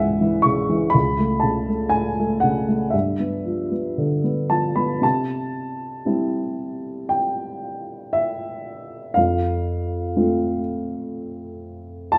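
Classical solo piano in a lyrical, calm mood, unfolding slowly at 56-62 BPM in 4/4 with a flexible rubato feel, this excerpt is cut from a longer piece. A dark upright piano plays alone throughout, its mellow, woody and somewhat boxy tone sitting up front across a range from C#2 to C#6, while a moderate recital hall reverb adds gentle space. The harmony opens in C-sharp minor and passes through G7 before settling into C major at 5.0 seconds, moving on to F at 9.2 seconds.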